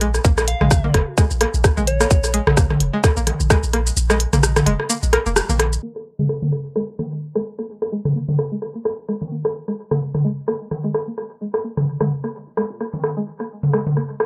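Hypnotic and clinical, this minimal techno cut from a longer piece runs at 129 BPM in Bb minor with a 16th-note swing, built on a punchy sine sub bass with a pitch-drop attack, pumping under the sidechain, and a twangy, string-like resonator pluck riff carrying chorus and dub echo. A tight, up-front electronic kick drops away at 3.6 seconds, a clicky minimal kit of hi-hat, rim click and shaker plays until 5.8 seconds, and a booming analog drum machine with rim clicks and toms, re-recorded in a small room, runs throughout. Early on a soft, pure FM bell melody with phaser drifts through briefly, and after a band accent a filter sweep carries the second section over light reverb.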